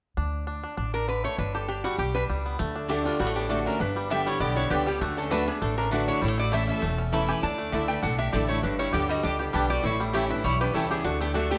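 Rustic and virtuosic, this bluegrass excerpt in D major races along at 199 BPM with a swung feel, as twangy, percussive banjo arpeggios and a woody, thumpy upright bass open at 0.2 s. A bright, metallic lap resonator guitar carries the slide melody up front from 0.9 s, then a full-bodied dreadnought acoustic guitar joins at 2.6 s, followed at 2.9 s by an airy, boxy fiddle second line and round, double-strung mandolin stabs sitting in the background. The ensemble moves through D, G and A changes, colored by Dsus2, Gadd9 and A7, in a moderate large studio reverb.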